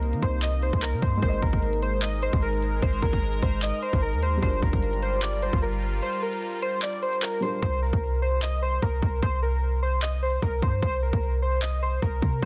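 A dense, heavily limited modern mix with light reverb carries this brooding, dark half-time trap hip hop clip in C minor at 150 BPM, where warbly, detuned lo-fi synth keys lead with chorus and delay over a deep, boomy 808-style sine bass and an up-front trap kit of hard-clipped kick, crisp hi-hats and handclaps, while a soft felt-muted upright piano in the background and a bright, resonant sawtooth pad with filter swell play until 7.6 s, the kick drops out between 6.0 and 7.6 s, and the hi-hats fall silent from 7.6 s as the harmony settles onto a bare C5.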